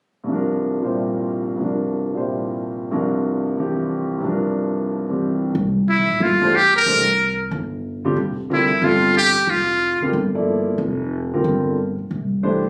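A muted trumpet takes the melody at 5.9 seconds, its metal mute lending a buzzy, thin brilliance, with light vibrato, soft attacks and a jazz soloist's phrasing up front in the mix. This is a hypnotic, open slice of modal jazz in C mixolydian, cut from a longer piece and swinging at 183 BPM in 4/4. A concert grand piano opens alone on a C9sus4 chord, its deep bass and long sustain giving the accompaniment a warm, spacious foundation. At 5.5 seconds a pizzicato upright bass joins, woody and thumpy, with the dark tone of gut strings. The sound was captured on a phone in the room, so club reverb and some lossy compression artefacts colour the recording.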